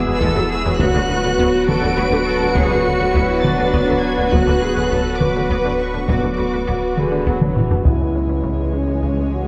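Cinematic hybrid orchestral and electronic film score in a tense, futuristic 6/8 at 68 BPM in B dorian, where a rich, vibrato-laden chamber violin section carries the high melody over a warm symphonic violin second line and a lush, distant viola accompaniment, while warm French horns and an evolving, morphing wavetable pad hold sustained chords. An intense symphonic cello section, a smooth studio double bass section and a deep, round sine sub bass anchor the low end, a very quiet, squelchy ring-modulated blip pluck adds arpeggios, and a hard-stick taiko ensemble drives beneath, its fill at 7.4 seconds leading into a shift to C#m at 7.8 seconds, all set in a moderate scoring stage reverb with the worn, warbling pitch drift of old cassette tape.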